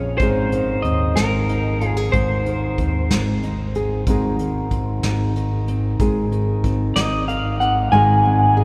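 Acoustic folk in a gently rocking 6/8, pastoral and nostalgic, this brief excerpt from a longer piece sits in a vast church-like space whose long, wet reverb hangs around every note. A slightly broken-up, lo-fi electric guitar with harmonic tremolo carries the melody up front, pausing at 3.7 seconds and returning at 7.0, while a fingerpicked nylon-string guitar, classical in tone with audible finger squeak, supplies steady accompaniment. Underneath, a dark, round fingered electric bass and a distant brush kit with a punchy kick and rolled-off top keep time, the drums stopping at 7.8 seconds.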